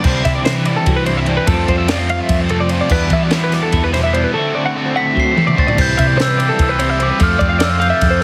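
Wistful and intricate, this excerpt of math rock with a midwest emo lean runs in a straight 7/8 at 294 BPM counted in eighths, cycling through Cmaj9, Fmaj9, Em9 and D9. Two bright, twangy twelve-string electric guitars share the harmony: one plays accompaniment with tremolo until 7.2 s, while the other spins high arpeggios. Beneath them sit a double-tracked overdriven stack guitar riff, a round hollow-body short-scale bass, and a dry compact cocktail kit with a high-tuned snare, punchy kick and dark cymbals. A soft, ringing glockenspiel melody played with rubber mallets enters at 5.0 s, just ahead of a drum fill that leads into the second section, and the mix sits in light reverb and a heavily compressed radio sound.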